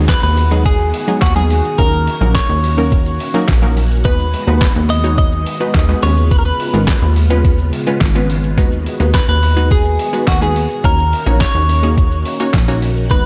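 Dance-pop in Eb minor at 106 BPM, driving and energetic, built on a punchy, funky plucked analog bass and a thumpy, overdriven 8-bit drum machine with handclaps, hi-hat, shaker and snare up front, while crisp detuned wavetable chord stabs and a lush string machine in the background pump with sidechain under a clean, compressed twelve-string electric guitar melody with delay, a very quiet jingly tambourine, and a faint downlifter during the first 4.0 seconds, all over Abm7/Eb, Ebm7 and Db7 chords in a dark production with light reverb.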